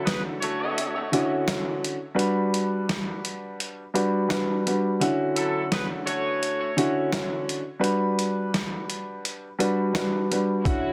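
A mellow, woody upright piano with a cassette-tape haze opens this dark, gritty boom-bap hip-hop excerpt at 85 BPM, moving between Dmaj9 and Gmaj7 over a swung groove. A compressed, pitched-down sampler-style drum kit with a thumpy kick, medium-tuned snare and hi-hat sits up front with a large-room character, while a clear horn section with light vibrato and a smooth top punches in with delayed stabs at 0.1 and 5.4 seconds. A soft-attack, floating string section appears only at 10.6 seconds, all set in light reverb within a dense, heavily limited modern master.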